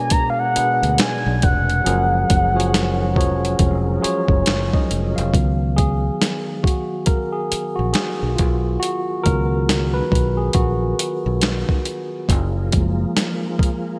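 Relaxed and warm, this neo-soul R&B excerpt moves at an unhurried 69 BPM in 4/4, with a swung sixteenth-note feel. A round, horn-like synth lead with a soft attack, vibrato, chorus and phaser carries the melody only through the first 4 seconds. A clean tine electric piano, heard through its built-in speakers, sits up front as accompaniment throughout and takes a solo from 5.3 seconds to the end. Beneath it, a lightly overdriven tonewheel organ with key click, chorus vibrato and a slow rotary speaker holds sustained chords in the background, dropping out in the middle and returning at 12.3 seconds. A gritty, compressed boom bap sampler-style kit with a thumpy kick, medium-tuned snare and hi-hat is overdriven and treated with gated reverb, while a direct fingered electric bass anchors the low end. The harmony moves from Bm6 to F#maj9 to C#9sus4 and back to F#maj9, framed by light reverb and bright 1980s-style digital production.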